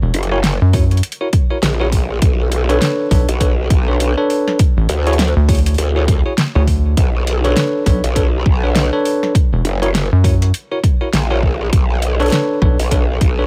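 Funky and gritty, this glitch hop cut moves at 101 BPM in 4/4 with a 16th-note swing, and it is taken from a longer piece. Two basses sit up front from the start: a rubbery, hollow square-wave bass with a resonant filter pluck and dark, decaying notes, and a growling, aggressive bass that wobbles through a formant filter, thickened by chorus and tube saturation into a bright, sustained snarl. A pop drum kit adds a fat snare and metallic hats, and an electronic kick drum joins at 0.7 seconds, punchy and up front, both carrying a tape-warm, layered character. Bell-like tine electric piano stabs ring clean and direct in the midrange, pumped by sidechain and trailed by delay. The harmony cycles through F#7, Bm9 and Dmaj9#11, with vinyl crackle running underneath and little reverb keeping the sound dry and close.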